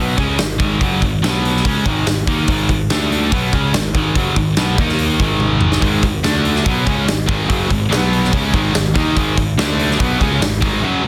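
Energetic and powerful, this brief hard rock excerpt at 144 BPM drives a power-chord riff centred on Ab5 through a bright, compressed distorted guitar and a scooped high-gain guitar, over a dark, round overdriven picked bass and an up-front big rock drum kit with a punchy kick, with a double-tracked overdriven guitar joining in the background at 5.8 seconds just after a drum fill, all set in a light small-room ambience and a dense, heavily limited modern master.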